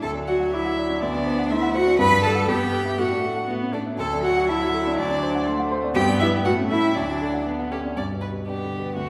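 A graceful, lively classical-period movement for piano quartet in a flexible, rubato 2/4, cut from a longer piece, where a focused violin with vibrato carries the melody over a smooth, up-front cello second line, a clear, even viola and a polished, present grand piano in accompaniment, all heard from further back in a scoring stage's wet 1.6-second reverb, with harmony turning through D7 and Gmaj7 before a new section begins on G at 8.0 seconds.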